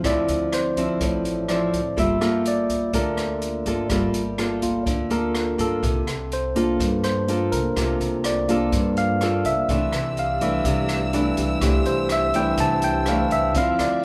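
A barky, clean tine electric piano solos up front through a combo amp across this melancholic, intimate bossa nova fragment, over fingerpicked classical nylon-string guitar, woody pizzicato upright bass and a distant, roomy jazz kit of hi-hat, boomy kick and rim click, and a lush bowed string section with a soft attack and vibrato joins at 9.7 s, all set in a moderate recital hall reverb.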